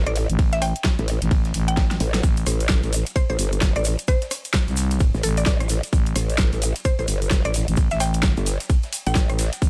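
Bass house with a bouncy, gritty swing, cut from a longer piece, where two growling, saturated, sidechain-pumped basses (one wobbling through a formant filter and chorus, the other a thick FM tone) sit up front beside a tight layered electronic kick, while an overdriven big-room kit with a huge snare, a very quiet pitched-up breakbeat kit with tape-warm grit, a woody mallet-like pluck melody with chorus and delay, and a grainy egg shaker entering at 2.2 seconds after a short drum fill fill out a dry mix.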